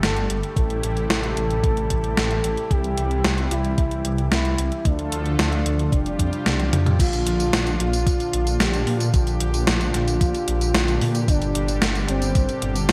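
This synthwave cut, taken from a longer piece, moves at 112 BPM in a straight 4/4 and carries a cinematic, nocturnal mood under a bright 1980s-style digital production with light reverb. An expressive portamento lead carries the melody between Bb3 and A4, its smooth, dark sawtooth tone softened by chorus, vibrato and a digital delay. Beneath it, a brassy analog pad holds sustained chords with a bold, vintage, warbling character, shaped by ring modulation, a filter swell and chorus. A dark detuned saw bass sits up front with a deep, rumbling, beating unison sound, and a gated 80s digital drum machine supplies crash, hi-hat, tambourine, toms and a gated-reverb snare, tape-warm and re-recorded in a small room. A thumpy electronic kick joins at 0.6 seconds, and a drum fill from 6.6 seconds leads into a new passage at 7.0 seconds, where the harmony moves from Gsus2, Am7, C, Dm and Fsus2 to Bb and Gm.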